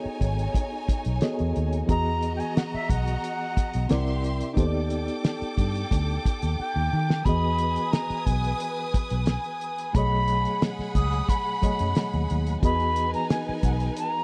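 Lush 1970s-style soul at 89 BPM in 4/4, this bittersweet, smooth passage is cut from a longer piece and sits in a dry, close studio sound with little reverb. A cloth-damped, thuddy drum kit sits up front with a fat snare, tight kick and hi-hat, its rolled-off top keeping it dark, and a short drum fill arrives at 6.6 seconds. Beneath it, a vintage muted fingered electric bass, round and foam-muted, holds the low end, while a reedy electric piano with fast tremolo, heard through its built-in speakers, carries the chords from B13 to Emaj9, C9 and an altered B7 over D#. From 1.9 seconds a silver concert flute takes the melody with an airy, straight tone, tongued notes and softened highs. Behind it, a distant studio violin section adds a lush second line, bowed with vibrato, soft attacks and expressive portamento.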